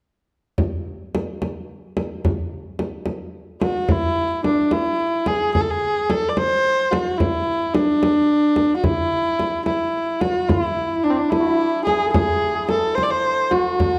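Persian modal ensemble music in 6/8, hypnotic and soulful, cut from a longer piece. A close, dry frame drum played with hard hands opens at 0.6 s, and at 3.6 s a single bowed kamancheh enters up front, its rich, focused tone full of vibrato and portamento. From 10.5 s a mellow hammered santur adds a shimmering, ringing second line, in a dark production with moderate recital hall reverb.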